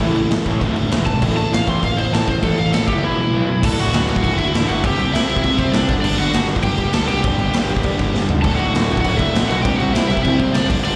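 A raw garage drum kit sits up front in this rowdy, upbeat punk rock excerpt, its punchy kick, medium-tuned snare, toms and crash cymbal sounding saturated and gritty with a rolled-off top and the pumping ambience of a bright stone room. The band drives a straight 4/4 at 199 BPM, heard as a live gig through the venue's PA with recital hall reverb. Over it, a bright, crunchy overdriven guitar carries the melody up front, picked and thrown back by slapback echo and digital delay, while a second crunchy guitar in the background plays a riff with its own slapback. A double-tracked, compressed overdriven electric guitar adds a very quiet riff, and an overdriven electric guitar solo marks the opening 3.6 seconds, where the chords move through power chords such as A5, D5 and E5. A hollow-bodied, overdriven semi-hollow guitar joins the riffing at the start, drops out once the music settles into D mixolydian at 3.6 s, and returns at 8.4 s, shortly after a drum fill at 8.1 s. 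Underneath, a fuzz-soaked picked electric bass, both direct and amped, grinds out a warm low end as the passage cycles through D, C and G5 before the clip cuts off.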